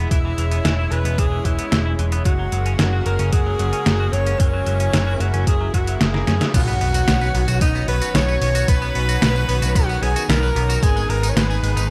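A clear, close-miked tenor saxophone sings a scooped, vibrato-laden jazz melody over a moody, cinematic 112 BPM synthwave groove in 4/4, backed by a lush, detuned sawtooth pad pumping under sidechain, a growly overdriven picked bass up front, a twangy clean guitar riff in the background tinged with 12-bit sampler grit and digital delay, a thumpy overdriven electronic kick, and a detuned 8-bit drum machine with a fat snare, crash, hi-hat and tambourine. A drum fill at 6.1 seconds then leads into a new section at 6.5 seconds, where an airy, dreamy sine lead joins softly behind and a very quiet sub drop sinks beneath, the whole set in moderate plate reverb and bright 1980s-style digital production.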